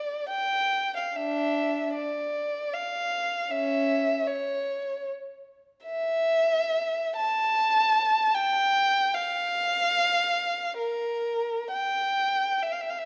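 Set in a moderate scoring-stage reverb, this meditative and lonely classical fragment, cut from a longer piece, features a single up-front solo violin with a dark, woody tone, smooth top and vibrato, bowing freely in D minor around 75 BPM in 3/4, its rubato and uneven beats giving the line an expressive feel across its 13.1 seconds.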